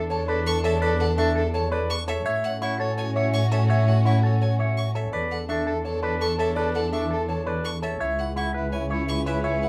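Bright and propulsive, this is a classical piece in a minimalist pattern style, moving in a straight 4/4 pulse and cut from a longer work. A brilliant concert grand piano carries the melody high in its range, its tone open with a long sustain, while a warm soprano saxophone, close-miked and played in a classical solo style with vibrato, weaves a second line just beneath it. A clear, focused solo violin and a dark, clean electric guitar shaped by an envelope filter both spin out arpeggios, the violin sounding distant and bowed, the guitar picked. Behind them, a smooth, even symphonic string section holds sustained chords in the background, and a lush, expressive double bass section sits up front with bowed, vibrato-rich bass notes. The harmony circles through E7sus4, A6 and back to E7sus4 before landing on C#m7 at 8.0 seconds, all captured with close, detailed microphones and very little reverb.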